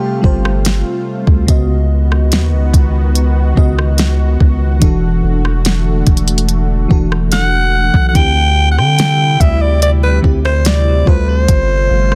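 A dense, heavily limited and dry mix frames this moody, longing contemporary R&B excerpt, where a deep, sine-toned 808-style bass and a smooth, tape-warm electronic drum kit with a soft kick, fat snare and smooth hats sit up front beneath a dark, dreamy FM electric piano with chorus and tremolo and a thick, detuned sawtooth pad; a barely audible downlifter lies under the opening, and a raspy, growling alto saxophone with scooped notes and digital delay sounds briefly at the start before returning at 7.3 seconds.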